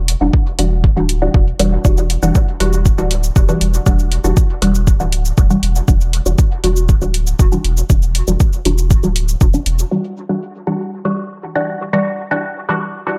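Hazy and meditative, this dub techno excerpt rides a steady 119 BPM pulse in 4/4. A deep, tape-warm electronic kick sits up front beside a smooth, dark sine sub bass that pumps under sidechain, while a lighter analog hi-hat and shaker ticks along above. Muted, detuned sawtooth chord stabs with a mellow phaser and dub echo drift under a filter sweep through an echo-heavy digital ambience, and they carry on alone from 9.9 seconds until the cut at 13.2 seconds.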